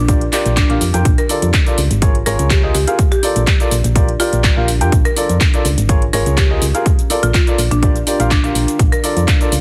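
A lightly swung 124 BPM groove from a punchy electronic kick and a house kit of handclaps, metallic hi-hat and shaker drives this feel-good, euphoric piano house excerpt in Bb major, where a round, dark FM bass pumps under the sidechain, a woody, boxy upright piano riff pumps through a low-pass filter, a bright, buzzing marimba melody rings with digital delay, and a deep, detuned sawtooth pad hovers very quietly beneath chords moving between Gm7/Bb, Bbmaj7 and Db6, all wrapped in light reverb and a heavily compressed, radio-like sheen.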